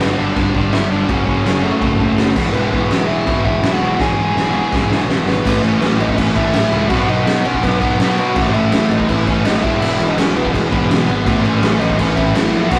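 A straight 4/4 punk rock drive at 165 BPM, upbeat and rowdy, puts a raw garage drum kit up front with a punchy kick, fat snare and crash cymbal, playing a fill from 4.0 to 5.5 s before the music moves into A lydian, while a dark, smooth overdriven lead guitar carries the melody over a scooped, compressed distorted rhythm guitar and a growly fuzz bass in the background, with a double-tracked high-gain guitar and a sludgy third guitar sitting very quiet beneath, captured as a rough rehearsal-room take with tube saturation and light reverb, cut from a longer piece.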